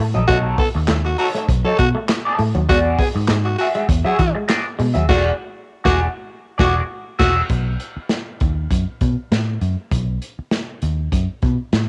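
Funk at 100 BPM in B mixolydian, funky and playful and cut from a longer piece, where a round, foam-muted picked bass and a crunchy, saturated breakbeat kit with handclaps sit up front beneath a raspy, growling tenor saxophone second line, a twangy, slightly broken-up electric guitar with wah and lush chorus comps over B9 and E9, and a clean, compressed semi-hollow guitar riff stops at 5.0 s, just before a band accent from 5.1 s, after which the sax and the wah guitar also fall away and bass and drums carry on alone over B7 from 7.5 s, the whole captured as a home cassette recording with light small-room reverb.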